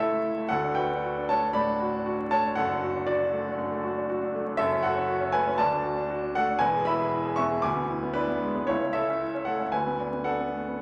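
A romantic character piece for solo piano, this short excerpt unfolds in D major at about 117 BPM in 4/4, its beats stretched and pulled with rubato. The mood is lyrical and warm, carried by a clear baby grand heard up front, with an intimate, natural tone, long sustain and audible action noise from the instrument itself. The piano spans a broad compass from E1 up to D6 across the full 10.8 seconds. The harmony moves from A/C# to D, through D/F# and F#m, then on to E and E7/D before settling on A/C# and closing at Bm7/D near 9.7 seconds. A wet recital hall reverb surrounds the playing, and a vinyl crackle lends the recording an aged patina.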